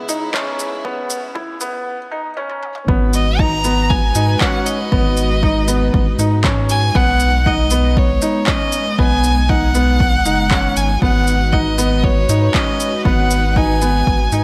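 Piano and strings electronica with a melancholic, hypnotic mood, moving in a straight 4/4 pulse, cut from a longer piece. A dark chamber string section holds sustained chords from the start, its soft, sul tasto bowing pumping under sidechain, while a felt-muted upright piano plays a mellow, intimate riff with audible action noise and delay. A deep house drum kit with handclaps, shaker and toms, overdriven and filtered in a small room, is soon joined by a punchy, overdriven electronic kick, and the opening build-up carries a filter sweep and a drum fill into the drop at 2.9 seconds. There a round, deep analog bass enters, wave-folded and pumping, and a clear, intense solo violin takes the melody up front with vibrato from 3.1 seconds. Chords shift from C#m7 to G#m7, then B69 and back to G#m7, under light reverb and studio ambience.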